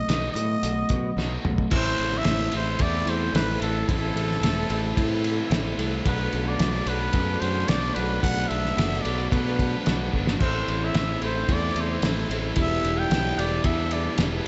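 A raspy, growling trumpet carries the melody with slapback echo over a cool, restless indie rock groove at 111 BPM, backed by a biting overdriven guitar with lush chorus and a twangy, slightly broken-up guitar through a small old amp, a punchy, bright picked bass, and a muffled, cloth-damped drum kit with a fat snare whose fill at 1.2 seconds ushers in a very quiet, flute-like tonewheel organ on slow rotary at 1.7 seconds, all set in a lush hall that lends a big arena sound with a rolled-off top.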